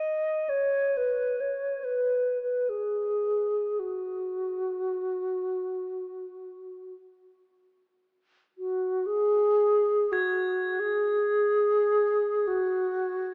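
A hollow alto flute with airy vibrato and a soft attack carries the melody up front through tape echo, while quieter crotales struck with plastic mallets ring in a shimmering, bell-like high register across this peaceful, spacious 13.3-second excerpt of free-time world meditation music, set in a reverberant recital hall with an AM radio tint.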